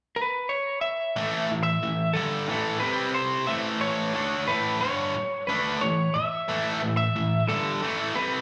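A straight 4/4 pulse at 90 BPM drives this energetic, powerful rock passage, cut from a longer piece and heard as a live gig through the venue's PA, set in a moderate, lush hall reverb. A lightly driven lead guitar carries the melody from 0.2 s, its dark, slightly broken-up tone picked, compressed and placed up front, ranging from A4 to E5 with a slapback echo. At 1.2 s a distorted electric guitar enters with a riff between G2 and D4, bright and overdriven, double-tracked and equally forward, also touched by slapback. Underneath, the harmony moves from an unaccompanied opening to A5, then C5 at 2.8 s, landing on A. The club ambience and the pairing of a shadowy lead against a glaring, thickened riff give the moment a raw, stage-bound force.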